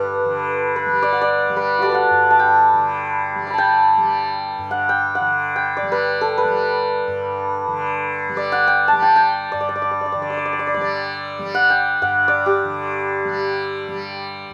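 Hindustani classical music in free time, this serene, devotional passage from raga Hamsadhwani in G is cut from a longer performance. A hammered santur carries the melody up front from F#4 to D6 with a mellow, ringing tone. Beneath it, a softly plucked tanpura holds a buzzing, shimmering drone for the full 14.5 seconds, captured live in one room with moderate studio reverb.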